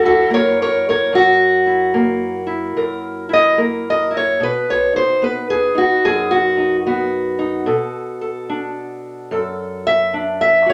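Gritty and soulful, this brief acoustic country blues fragment at 73 BPM in a swung 4/4 features a lone fingerpicked steel-string parlour guitar, dark and boxy in tone and placed up front, moving from F#7 to B at 4.4 seconds and Bm7 at 7.7 seconds, all set in a moist studio reverb.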